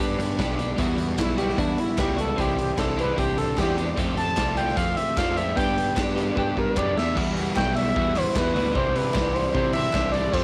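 An overdriven semi-hollow guitar, a twelve-string electric guitar and a fuzz picked electric bass open this upbeat, jangly indie rock excerpt at 151 BPM in a straight 4/4, with a raw garage drum kit joining at 0.2 seconds. The twelve-string rings clean and compressed through spring reverb, while the dark, hollow-bodied overdriven guitar sits in the background with analog chorus and tape echo, and the bass growls with fuzz underneath. The drums sit up front, saturated and gritty with a punchy kick, a medium-tuned snare and a rolled-off top, breathing in a bright, pumping stone room. At 1.2 seconds an expressive sawtooth synth lead enters, smooth and mellow with a soft attack, sustained notes, vibrato and chorus, carrying the melody up front as crisp, very quiet group handclaps join. Chords move through G, Emadd9, Cadd9 and Fadd9, a drum fill leads into a new section at 7.2 seconds, and the whole has the lo-fi character of a home recording on cassette with light reverb.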